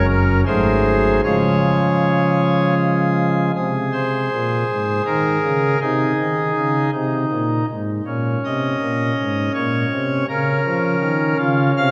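A classical, chorale-style fragment for solo pipe organ, cut from a longer piece, unfolds in a serene, reverent mood at 80 BPM in a straight 3/4. The organ speaks through a cornet stop with a nasal, up-front character and a romantic voicing, ranging from Gb1 up to F5. It opens in Db major, passing through Ab7b9 and Db before turning toward Ab major at 3.5 seconds, and a Bbm/Db chord arrives at 10.3 seconds. A wet church reverb with a long tail surrounds the instrument, giving the short passage a spacious, devotional glow through its close at 11.9 seconds.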